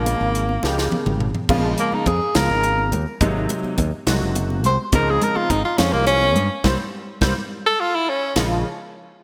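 Opening at 0.0 s, a breathy tenor saxophone with scooped notes and light vibrato sits up front over a clear baby grand piano with analog chorus and a growly fingered electric bass, joined at 0.1 s by a crisp, high-tuned fusion drum kit and dry background congas in this slick, nocturnal electric jazz fusion excerpt in Bb minor at 70 BPM in 6/8, where drum fills and a band accent from 6.6 s punctuate the sax solo under a lush hall reverb and bright 1980s-style digital production.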